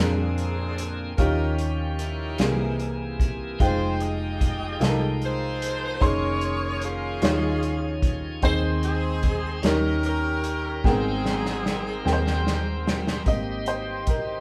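An up-front soul drum kit, dark and tight with a rolled-off top, anchors this slow, reverent and jubilant gospel excerpt in 6/8 at 50 BPM in Ab major, and it plays a fill starting at 10.8 s. A bright saxophone section carries the melody with jazz-style vibrato, and a woody, slightly detuned vintage upright piano accompanies with long sustain. A shouting tonewheel organ holds chords through a slow rotary speaker with light overdrive, while a round, punchy hollow-body electric bass sits underneath. The harmony moves through rich extended chords such as Bb9, C7alt, Fm9 and Eb9sus4 before resting on Abmaj9. The saxophones drop out near the end, veiled, muted strings enter softly in the background at 13.2 s, and the piano takes a brief solo from 13.3 s. The band plays live in one room, with moderate studio reverb.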